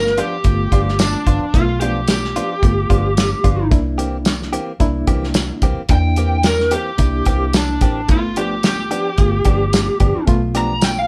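A dark, overdriven lead guitar from a small cranked amp sings up front over a barky, reedy electric piano with tremolo and a round, foam-muted fingered bass, as a cloth-damped, thuddy drum kit with hi-hat, kick, snare and tambourine and a bright, compressed clean guitar recorded direct and playing stabs join in this laid-back, rollicking straight-eighth soul blues, cut from a longer piece and moving from G7 to C7 and back in a lightly reverberant room.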